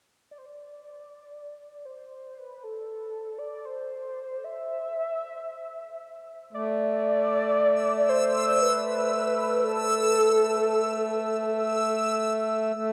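A vast, echoing cathedral reverb envelops this serene, reflective ambient excerpt in A minor, moving slowly at 58 BPM in 3/4 over an A5 chord. A velvety, detuned synth lead with chorus, vibrato and a diffuse delay carries the melody up front as it fades in from 0.3 seconds. A reedy, breathing pedal harmonium drone joins at 6.5 seconds, and at 7.5 seconds a bright, granular backwards swelling texture adds a dreamy shimmer high above.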